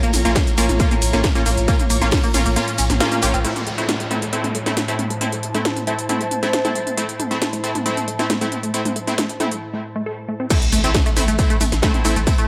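A straight 4/4 pulse at 136 BPM drives this hypnotic peak-time techno cut in A phrygian, tuned to A4 = 436 Hz: a heavy, up-front electronic kick and a techno kit of cracking snare, smooth hats, shaker, ride, crash and toms pump hard alongside a very quiet, roomy acoustic rock kit with tambourine, while a saturated sine sub bass grinds underneath. A tight, detuned sequenced synth riff with phaser and dub echo and punchy supersaw stabs run throughout, over a dark, evolving analog drone and a bright, ethereal airy pad, with the harmony shifting from Bb minor to A minor at 3.4 seconds. After a break at 9.6 seconds, the drop returns at 10.5 seconds with the kick, bass and a faint downlifter and impact, all set in an echo-heavy mix with moderate plate reverb, as the piece continues beyond this clip.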